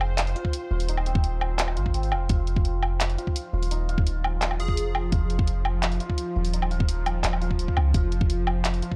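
A detuned, string-like sawtooth drone holds sustained chords alongside shimmering hammered santur arpeggios with tape echo and a deep, dark 808-style bass, opening this spacious, tense half-time drum and bass cut at 170 BPM, tuned to A4 = 439 Hz and moving from Fm toward Ebsus2. A layered electronic kit of handclaps, hi-hat and woodblock sits up front, joined at 0.4 seconds by a pitched-down, thumpy sampler kick, while the drone carries built-in reverb, vibrato, 12-bit sampler grit and sidechain pumping. A punchy square-wave unison lead flashes briefly at 4.6 seconds on a single Ab4 through phaser and analog delay, all within a dry, gritty hardware sound.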